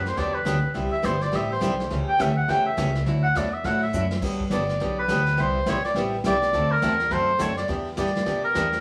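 A bouncy swung eighth-note pulse in 4/4 drives this short, playful western swing cut from a longer country piece, carrying a down-home, easygoing mood at a brisk clip. A vintage brush drum kit sits low in the mix, with a medium-tuned snare, punchy kick, hi-hat and crash played with brushes, and it drops in a quick fill at 3.9 seconds. Beneath it, a pizzicato upright bass sounds woody and growly, thumping up front on its steel strings, while a picked acoustic guitar adds bright, boxy swing-style accompaniment through changes like Gmaj7, Cmaj7, A7/C# and D7. On top, a clear oboe takes the solo from the very start, its classical-style tone crisp and forward with a light vibrato. The players share one room, and a generous studio reverb gives the ensemble a lively, live-band glow.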